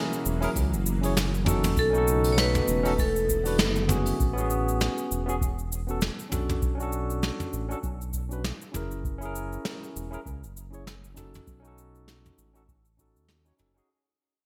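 A barky tine electric piano through a combo amp and a silky, warbling string machine open this blissful sunset chillout cut, joined at once by airy brushed drums with gated reverb, a round, deep analog bass and a tape-warm electronic kick, all in a swung 4/4. A metallic, ringing vibraphone with hard mallets carries a brief melody from 1.8 s to 3.9 s, capped by a band accent, and the string machine drops out at 4.2 s as the track begins its fade. The bright 1980s-style digital production sits in a moderate plate reverb, with delay on both the electric piano and the vibraphone.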